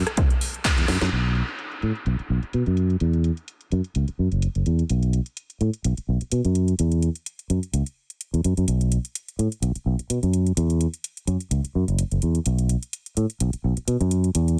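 A tape-warm house drum kit with cracking snare, metallic hats, handclaps, rim clicks and crash opens this groovy, funky filtered disco house excerpt with a swung feel. It is joined at 0.2 s by an up-front fingered electric bass, low-passed and sidechain-pumping under filter sweeps, and by a punchy analog electronic kick heard only until 0.8 s. After a band accent and a drum fill, a filter sweep runs over the drums from 1.1 s as the bass keeps sweeping, all in a lightly reverberant space.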